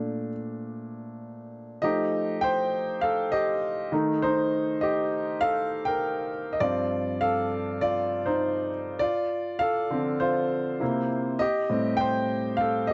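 A warm grand piano opens this short passage from a longer soul piece, playing entirely alone from 0.0 to 12.9 seconds at an easy 100 BPM in straight 4/4. The mood is bittersweet and silky, set in C dorian and spanning the keyboard from G2 to G5. The piano sits up front in a light reverb, with a softened top end that keeps the tone rounded. Its harmony moves through rich, colored chords, beginning on Bbmaj7 and shifting to F9 at 1.8 seconds, where a longer second section begins. From there it passes through Cm6/Eb, G9sus4, Dm7 and C7 before settling on Am7b5 at 11.4 seconds.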